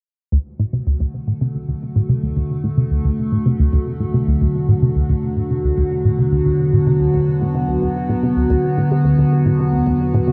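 Ambient, sequencer-driven space music at 110 BPM in 4/4, expansive and hypnotic, cut from a longer piece and sitting on a D chord tuned slightly below standard pitch. A tight, driving sequenced synth riff with a detuned sawtooth-and-square pluck starts at 0.3 seconds, up front with chorus, phaser, tape echo and a filter sweep; at 0.9 seconds an evolving, morphing wavetable pad joins with slow-attack sustained chords, carrying chorus, phaser, its own reverb and a filter sweep of its own. From 1.9 seconds a very quiet, mellow analog drone hums a warbling, resonant pulse-width bass note on E beneath them, and a lush hall reverb opens up the whole space.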